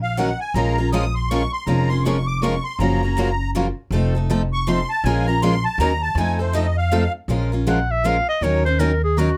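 Fiery and virtuosic, this short cut of jazz manouche string swing in 3/4 at 160 BPM in Bb minor opens with a reedy, shimmering musette accordion solo over a woody, thumpy pizzicato upright bass and two picked steel-string acoustic guitars, one bright and full-bodied with finger squeak, the other boxy, before a clear clarinet with light vibrato and subtone takes the melody at 7.7 seconds, all captured in a close, detailed recording with little reverb.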